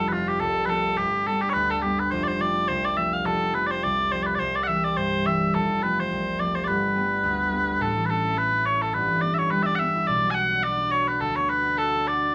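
A lively, bright Celtic reel drives along at 211 BPM in 4/4 with a gentle swing on the eighth notes, settling into A mixolydian from 7.8 seconds in this short cut from a longer piece, tuned slightly sharp to A4 = 444 Hz. Mellow small bagpipes carry the melody up front, sweet and continuous with vibrato, while a concert harp accompanies, also up front, with fingerpicked, ringing acoustic tones through chords that move from F and G toward Aadd9, Bm and D. The pair sound like a band playing live together in a small room, wrapped in a wet, short reverb.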